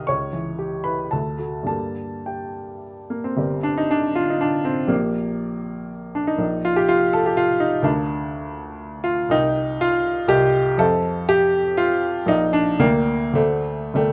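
A baby grand piano opens alone, sounding a half-diminished chord on C sharp that resolves through D to G minor in the first two seconds. This is a romantic character piece for solo piano in G minor and 3/4, shaped with rubato as the tempo moves between 90 and 128 BPM, and its mood is warm and passionate. After a brief opening passage, a longer second section begins at 3.4 seconds and turns toward B-flat major, moving through C minor seventh and F seventh before settling back on B-flat. The playing spans from G1 up to F6, so deep bass notes sit beneath high upper lines. Close, detailed microphones place the instrument present and up front, with a light reverb adding some air. This fragment of a longer piece ends on a D seventh chord at 13.4 seconds, leaving the harmony unresolved.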